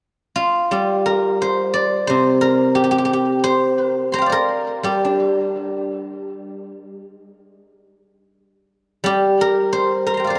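Contemplative and elegant, this short excerpt of Chinese traditional music features a solo guzheng moving in a G yu mode. The tempo sits around 86 BPM in 2/4, though the beats fall unevenly with a rubato feel that lets the phrases breathe. The guzheng enters at 0.4 seconds and carries the whole passage alone, played with fingerpicks across a range from C3 to C6, its acoustic tone ringing and silvery and placed up front. A tape echo colors the instrument. The whole mix is soaked in a plate reverb with a long 3.3-second decay, giving the recording a dreamy, suspended atmosphere.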